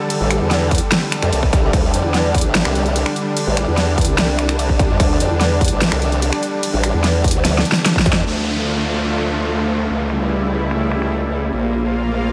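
A dreamy mix soaked in huge ambient reverb frames this chaotic, aggressive slice of heavy wobble dubstep, cut from a longer piece and set in a half-time feel. Up front, a saturated formant-sweep wobble bass with chorus and overdrive wobbles beneath a punchy, overdriven electronic kick. Alongside it, a layered big-room kit adds a huge snare, hi-hat, finger snaps and crash, with low-pass filtering and studio reverb. A lush, detuned supersaw pad holds bright sustained chords with sidechain pumping, starting on a D5 power chord. During a drum fill, the kick stops at 8.1 s, and at 8.3 s a single cello enters with an intimate, airy sul tasto tone, light vibrato and tape echo, while a downlifter and riser appear and a filter sweep works on the pad. The harmony then shifts from Dm through A7/C# to Bb5.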